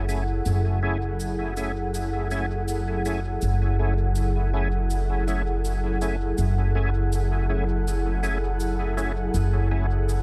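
Deep and spacious, this ambient dub excerpt moves at 81 BPM in 4/4 in F# minor, resting on a single F#m7 chord while a filter sweep drifts across the analog synth pad for the full 10.2 seconds. An airy, breathy pad with a detuned, noise-layered texture holds sustained chords up front, and a woody, thumpy pizzicato upright bass anchors the low end on F#1. A gritty, overdriven tonewheel organ adds stabs through slow rotary speaker, chorus vibrato and dub echo, while a faint cabasa in a big room trails its own echo through the lightly reverberant, echo-heavy mix.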